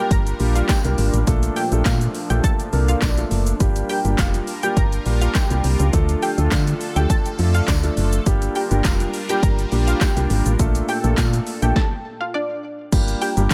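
Bittersweet yet confident, this dance-pop cut in G minor moves at 103 BPM in a straight 4/4, sitting inside a drop that cycles through Gm7, Bbmaj7 and Dm before a stop from 11.8 to 12.9 seconds. A deep house drum kit, overdriven and up front, drives it with a deep kick, punchy snare, metallic hats, handclaps, shaker and crash cymbal, while a jingly tambourine joins distantly in the background at 0.7 seconds. Beneath, a solid FM bass sounds round and dark with a fast attack, its sidechain pumping shared by the other melodic parts. A dark, mellow baby grand piano supplies accompaniment with long sustain, and a sweeping resonant pad of detuned sawtooth tones holds airy, evolving chords behind it with chorus. On top, a round analog pluck carries the melody from D4 to Bb5, brightened by chorus and a digital delay. The mix is dry, with little reverb.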